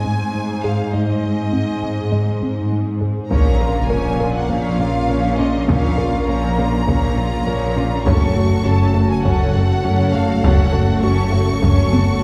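Opening on a bright, focused violin melody over a shimmering chorused pad, a nasal sequenced synth arpeggio, a round analog bass riff and very quiet cello, this brooding, futuristic hybrid orchestral and electronic film cue in Bb minor at 101 BPM expands at 3.3 seconds with a huge sub drop, hard-stick taiko drums, a menacing saturated saw bass, distant double basses, background violas and second violins and dark French horns, all set back in a wet scoring-stage reverb before a drum fill at 11.9 seconds closes this extract from a longer piece.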